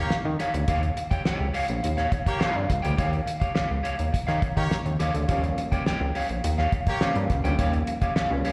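Funk with a gritty, playful mood: a fat, detuned analog bass and a cloth-damped, thuddy drum kit sit up front beside a dark, slightly broken-up electric guitar, while a clear, loose horn section carries a distant second line until 7.1 seconds and an overdriven reed electric piano with fast tremolo jabs in stabs from 5.3 seconds over an Eb9 chord, all captured like a live gig through the venue's PA in a moderate club room.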